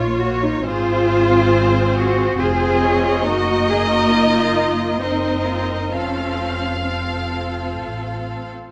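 Muted chamber strings open together: the violins carry a veiled, con sordino melody over a second violin line, with violas filling the accompaniment and cellos and double basses shaping the bass, all bowed with vibrato. The movement is slow, elegiac and solemn, in a rubato 3/4 at roughly 63-70 BPM, its harmony moving from Bb minor through Fm/Ab, Ebm/Gb and Cm7b5/Gb to an F major chord. A moderate scoring-stage reverb surrounds this brief portion of a longer piece, with the cellos stopping at 7.8 seconds and the melody at 8.3 seconds.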